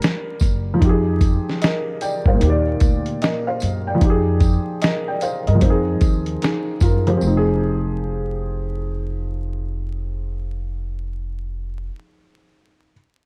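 Melancholic and hazy, this lo-fi hip hop fragment with a swung feel pairs a dark, mellow upright piano of short sustain with a woody pizzicato upright bass and a muffled, compressed sampler-style drum kit with thumpy kick and fat snare that sounds re-recorded in a small room, while a jingly, band-limited vintage tambourine sits in the background; the drums stop at 7.2 seconds and the tambourine at 7.6 seconds, leaving piano and bass to carry on amid light studio reverb and vinyl crackle.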